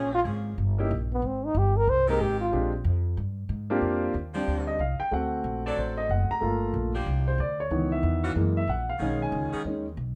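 Big band swing jazz with a brassy, energetic mood, this short cut opens on a mellow, close-miked trombone solo with vibrato before a warm concert grand piano with audible action noise takes its solo from 3.8 seconds, all over tight, clear saxophone-section chords and a woody pizzicato upright bass in light reverb.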